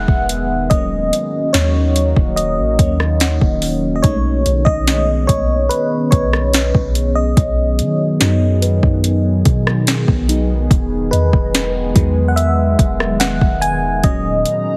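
An FM electric piano with tremolo leads this slow, late-night contemporary R&B excerpt, its mellow, phaser-treated tone carrying a solo across the whole passage over chords that move from Emaj7 through D#m7, B13 and G#m7/B. Beneath it, a deep, dark ambient pad holds sustained chords, its detuned sawtooth body thickened by chorus and its own reverb. A soft, round 808-style bass supplies sine-like low end, while a smooth, produced drum kit of soft kick, sharp snare, rim click and hi-hat sits up front with a touch of overdrive and a small-room character. In the background, a delicate, bell-like celesta adds a sweet texture through tape echo. The mood is longing, and the overall sound is heavily compressed like radio, with light reverb, until the fragment ends at 14.8 seconds.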